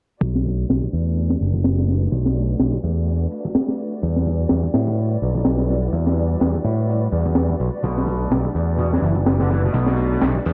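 Breakbeat with a gritty, raw mood, built on a crunchy small-room drum kit with a high-tuned snare and tight kick, a growly, overdriven picked bass played up front, and a rich bowed string section in the background that holds sustained chords through 12-bit sampler grit and sidechain pumping, while filter sweeps move across the bass and strings and a double-tracked fuzz guitar riff with delay enters at 7.8 seconds, all in a dark, dry production cut from a longer piece.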